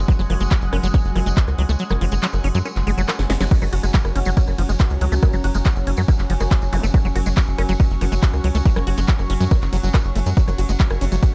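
A straight 4/4 psychedelic trance pulse at 140 BPM drives this intense, alien excerpt, led by a punchy, up-front electronic kick that drops out from 1.8 to 3.5 seconds, with a drum fill from the techno kit, with its cracking snare, smooth hats, claps, rim clicks and cymbals, arriving from 3.2 to 3.5 seconds. Underneath, a tight, nasal sequencer bass plucks with a driving urgency, while a squelchy, resonant acid bass riff, saturated with tape colour, chorus and dub echo, pumps against the kick. A sawtooth drone with moving overtones, phaser and gritty 12-bit character sustains chords around F#, joined by a blurred granular cloud pad and a jingly tambourine in the background, with a very quiet electronic zap at 6.7 seconds inside a dark, digital ambience.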